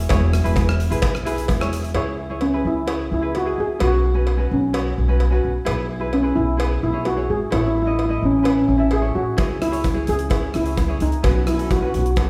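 A lush recital-hall reverb with a 1.5-second tail places this bouncy, carefree calypso excerpt further back in the room, though several parts still sit up front. At 129 BPM in a straight 4/4 in E major, a pizzicato upright bass on gut strings sets a woody, thumpy low end, while a fingerpicked tenor ukulele adds light, warm accompaniment and a close, dry cowbell keeps time throughout. A gated 80s drum kit of hi-hat, rim click and a punchy kick brings a polished, airy snap in a bright stone room, dropping out at 1.9 seconds and returning at 9.4 seconds. From 2.4 seconds a shimmering lead steel pan, played with medium rubber sticks, carries the melody with a dark, smooth, metallic tone. Underneath, the harmony moves from E through C#m, Bsus2, E/B and A before circling back to C#m and Bsus2.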